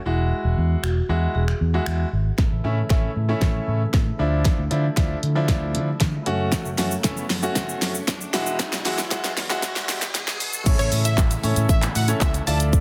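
Upbeat and summery, this dance-pop excerpt in A major moves at 116 BPM in a straight 4/4, opening on a mellow, woody marimba melody in the background with digital delay while a brilliant grand piano and a round, dark fingered electric bass pump under sidechain compression, and a punchy, up-front electronic drum kit of kick, fat soft-clipped snare, hi-hat, shaker, snaps, handclaps and crash joins at 0.8 seconds. From 2.4 seconds, very quiet chamber organ flute stops with a soft chiff hold sustained chords through a build-up marked by a drum fill, a filter sweep and a faint electronic riser, with chords moving from A through Dmadd9 and F#m to Eadd9. The drop lands at 10.7 seconds, where a catchy, full-bodied plucky unison lead, detuned sawtooth with a sub octave, carries the melody with digital delay over a dense, heavily limited mix with light reverb.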